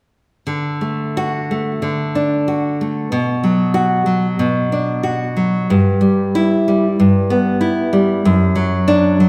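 Loose, rubato timing in 4/4 gives this short romantic passage for solo classical guitar an unhurried, speaking quality as it moves through D, Bm, Em/G and D/F#, with a warm, sunny mood. The fingerpicked nylon-string guitar plays from 0.5 to 9.3 seconds and sits up front with a bright tone. A wet, church-like reverb surrounds it, giving the notes a lingering glow in what sounds like a fragment of a longer piece.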